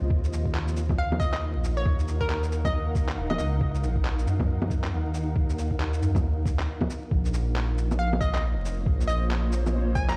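A blurred, granular cloud pad and a deep, rumbling detuned saw bass open this melancholic, ghostly future garage excerpt in Bb minor at 137 BPM, both pumping with sidechain as a muffled, tape-warm kick and overdriven, pitched-down shaker, handclaps and bongos set a swung 16th-note groove. A hollow, bouncy square pluck with chorus and analog delay carries the melody from 1.0 to 3.5 seconds and returns at 8.0 seconds, as the harmony moves from Ebm to Bbm at 7.1 seconds. Vinyl crackle and a large reverb give the piece the sound of a big system playing in a bare room.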